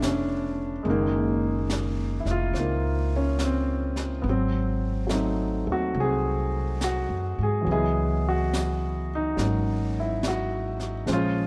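A dark, lightly reverberant production frames this tender, intimate jazz ballad at 71 BPM with a gentle swing: an up-front grand piano with long sustain and audible action noise comps through Db7alt, Gb69, Ab7b9 and Dbm11, a woody, growly pizzicato upright bass sits close beside it, and a small-room brush kit with a high-tuned snare and hi-hat whispers underneath throughout this 11.5-second fragment cut from a longer piece.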